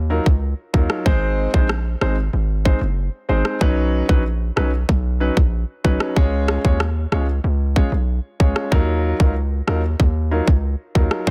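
A hard-hitting 808-style bass opens this bouncy, hypnotic dancehall excerpt in Eb minor at 94 BPM, its punchy, saturated sine tone carrying a noise layer and a fast attack that decays, sitting up front. A warm concert grand piano joins at 0.1 seconds with an intimate, polished sound, audible action noise and deep low end, moving through Ebmadd9, Ab, Badd9 and Db before returning to Ebmadd9. At 0.3 seconds an electronic island pop drum kit arrives up front with a tight kick and rim clicks, and the whole mix sits in a studio reverb.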